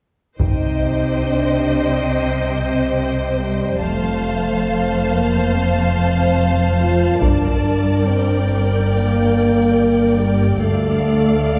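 Cinematic, epic orchestral film score with a dramatic, heroic mood, cut from a longer piece and moving at a broad, stately pace. A clear, intense violin section carries the melody with vibrato and a smooth top, while a second violin section adds a softer, expressive line above violas that bring gentle portamento and a close presence. Cellos and a rich, distant double bass section anchor the low end with bowed lines, the basses smooth and even, and a dark French horn section holds sustained chords with light vibrato, standing forward in the mix. A taiko ensemble struck with hard sticks adds a vintage, band-limited punch in two short bursts, from 0.4 to 2.1 seconds and again from 7.2 to 8.9 seconds. The harmony moves through Cm, F, Gm and Dm, and the whole orchestra sits back in a lush, reverberant concert hall.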